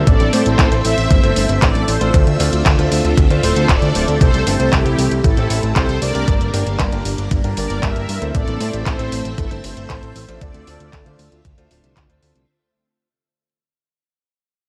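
A straight 116 BPM italo disco beat in D minor drives this nostalgic, bittersweet excerpt, where an overdriven, thumpy electronic kick sits up front with layered handclaps and bright hats, a fat, saturated analog bass anchors the low end, a round, brassy synth lead with vibrato carries the melody, a swirling phased string machine holds chords in the background, brilliant baby grand stabs ring out, and the dry, gritty mix with vinyl crackle fades out from 4.2 seconds over an Am, Dm7 and Gm progression.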